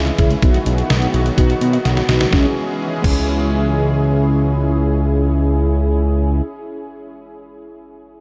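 Soaked in a huge ambient reverb with a faint mains hum, this nocturnal, cool synth-pop fragment sets a fat, up-front analog bass and a thumpy, detuned 8-bit drum machine, which plays a fill at 1.9 seconds and stops at 3.2 seconds, beneath mellow, brassy synth brass with a moving notch, a lush, nasal unison pad holding sustained chords, and a very quiet, warbling, lo-fi pluck spinning arpeggios as the harmony moves from B to C# minor.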